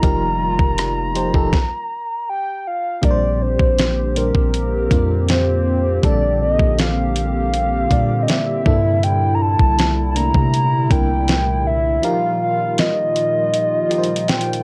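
Contemporary R&B with a smooth, romantic mood, where a hollow, woody clarinet-like synth lead with chorus and vibrato carries the melody up front over a tremolo-tinged FM electric piano, a flute-like pad and a deep, sine-toned 808-style bass that drops out at 12.0 s, while a gritty, compressed soul sampler-style drum kit with a thumpy kick and fat snare sits forward, the band pausing in a brief stop at 1.5 s and the kick falling silent from 12.0 s, all in light reverb with cassette-tape grain on the lead, piano and pad.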